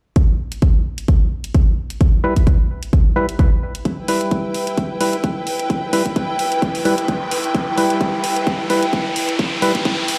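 A punchy electronic kick drum sits up front on a steady 4/4 pulse with a light swing on the sixteenths, while a layered electronic hi-hat ticks quietly beneath it; both drums carry the character of a small room. This aggressive, bouncy bass house cut from a longer track brings in a hollow, percussive organ stab at 2.2 seconds, its mellow sine-and-triangle tone edged with a noise layer and a fast attack, and colored by chorus, delay and sidechain pumping. At 3.9 seconds a build-up begins under a filter sweep as a rich studio string section enters, lush, bowed and close, with vibrato and the same pumping motion. An electronic riser joins at 4.9 seconds and carries the build through to the cut. The mix pairs light digital ambience with a large studio reverb, and it sounds as though it is played through a big sound system in a bare room.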